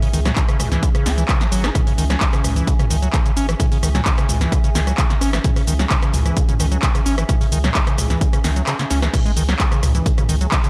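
An acid house excerpt in C# minor opens with a squelchy, hollow square-wave acid bass riff, resonant and plucked by its filter, run through overdrive, cassette tape and tape echo, alongside a punchy analog drum machine of snare, handclaps, hi-hat, rim click, shaker, toms and crash, with a short room on the snare, clap and hats. At 130 BPM in a straight 4/4, the mood is gritty and raw, sitting on a single C#m chord. A deep, thick, saturated sine sub bass arrives at 0.1 seconds with sidechain pumping, and an up-front, tape-warm analog kick drum lands at 0.4 seconds, dropping out briefly around 8.7 seconds before returning. In the background, a warbling, nostalgic lo-fi pad of detuned, wave-folded square and triangle tones swells in slowly and sustains, mellowed by chorus and its built-in reverb while pumping with the sidechain. The overall mix is dry, with the kick and sub bass most prominent.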